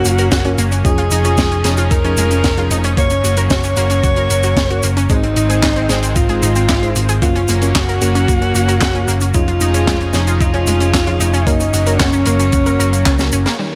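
Synthwave at 113 BPM with a driving, nocturnal mood, where a breathy, close-miked alto saxophone carries a mellow, subtone jazz melody through digital delay over a thick, detuned unison pad pumping with sidechain, a bright sawtooth analog pluck playing chorused arpeggios, soft FM electric piano stabs darkened by a low-pass filter, a round hollow-body picked electric bass up front, a tight funk drum kit with dark cymbals and a high-tuned snare, and a thumpy, tape-warm electronic kick from 0.3 s, all in a small room, before a drum fill from 13.1 s leads to a band accent at 13.5 s.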